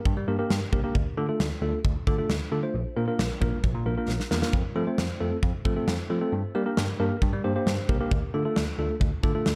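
A gated 80s drum kit and a bell-like tine electric piano open this short synth-pop excerpt together, the kit's tight kick and medium-tuned snare sitting up front with an airy, polished big-room sound. The bright, clean electric piano carries the bass line in the low register, while a second tine electric piano, mellow, worn and slightly out of tune, joins just after as up-front accompaniment in the middle range. The mood is upbeat yet nostalgic, moving through Gm, Dm, Bb and F before returning to Gm and Dm. A drum fill at 4.1 seconds marks the midpoint of the passage. A moderate plate reverb and small room ambience give the whole a dark, warm production, and all three parts play through to the cut at around 9.6 seconds.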